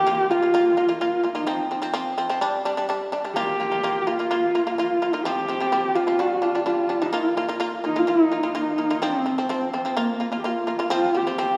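Vast and proud, this Mongolian folk passage, cut from a longer piece, moves at 127 BPM in a straight 4/4 in Bb zhi mode, with chords cycling through Bb5, F5 and G5. A single bowed horsehead fiddle carries the melody up front from Bb3 to G4 with a dark, husky, nasal tone, vibrato and portamento. A powerful, fretless shamisen, also up front, plays bright, buzzing plectrum-plucked arpeggios between F3 and F4, both parts sounding for the full 11.6 seconds inside a wet concert-hall reverb.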